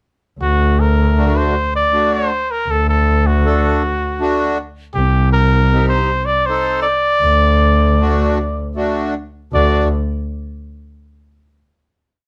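In a straight 3/4 at 79 BPM, this short, festive and soulful klezmer piece in D phrygian dominant puts a clear cornet up front with a jazz-tinged modal solo melody full of ornaments and vibrato, bathed in plate reverb, over a warm bowed double bass that plays expressive root-and-fifth lines on the main beats with vibrato and portamento, while a reedy, slowly beating accordion enters at 1.2 seconds with off-beat triad chords as the harmony moves from D to C minor and back to D before a final chord at 9.5 seconds, set in a lightly reverberant room.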